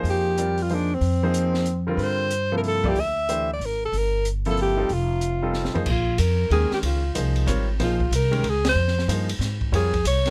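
Modal jazz in a brisk swung 3/4, cool yet intense, heard in a short cut from a longer piece. A breathy alto saxophone carries the melody from 0.1 seconds, up front and intimate, its whispered subtone, soft attack, vibrato and scooped notes giving the line a close, confiding quality. Beneath it, a woody upright bass sits forward in the mix, plucked with steel strings, while a clear baby grand piano supplies polished accompaniment over chords moving from Fm9 through Gm9 and F7. An open jazz drum kit in a small room adds dark cymbals, a high-tuned snare and a boomy kick, with a fill from 5.5 to 5.9 seconds leading into a new section on Bbm9. A band accent lands at 8.6 seconds, and the close, detailed recording carries little reverb.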